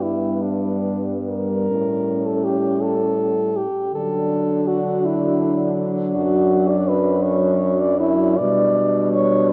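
A lyrical, serene classical piece for horn quartet, this excerpt moves in 6/8 with a flexible, rubato feel. Four French horns play throughout the 9.5 seconds: a warm, present lead horn carries the melody up front, while a dark second horn with light vibrato sits distant and roomy in the background on a second line. A third horn, also dark with a soft attack, supplies accompaniment, and a mellow fourth horn with light vibrato and a vintage tinge holds the bass. The harmony passes through G, A7, D, D/F# and G/B, giving the brief passage an unhurried, hymn-like glow. A moderate church reverb surrounds the ensemble, and the sound carries the worn, warbling pitch drift of old cassette tape.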